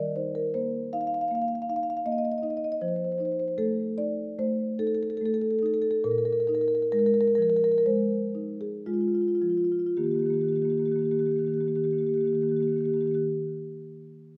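Contemporary classical for solo marimba in Eb lydian, warm and playful, with a rubato feel moving between 53 and 81 BPM and slowing from 1.3 to 10.0 seconds, as the woody, round tone of soft mallets on rosewood bars sits mellow and up front from Bb2 to F5, ringing into a wet recital hall reverb until the marimba stops at 13.2 seconds in this excerpt cut from a longer piece.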